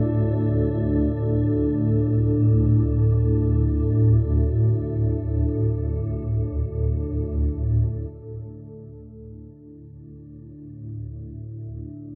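A swarming, detuned low drone and a deep, moody sawtooth pad with chorus sound together from the start of this unsettling dark ambient excerpt, the tense, granular drone sitting beneath the pad's sustained chords, both up front and bathed in a vast, echoing cathedral reverb with a cassette-tape character.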